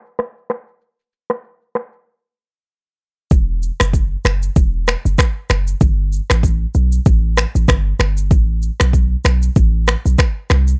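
Hypnotic and sultry, this afrobeats clip in 4/4 rides a swung sixteenth-note feel. An electronic afro-pop drum kit opens at 0.1 seconds with finger snaps, rim clicks, shaker and a deep kick, all sitting up front while a filter sweep colors the opening stretch. At 3.3 seconds a boomy, sine-toned 808-style bass arrives up front, its fast attack decaying into low notes between E1 and C2. From there the drums and bass carry the groove together to the close at 10.8 seconds. The sound is dry and gritty, with little reverb and a low-pass filter shading the mix, and the clip is cut from a longer piece.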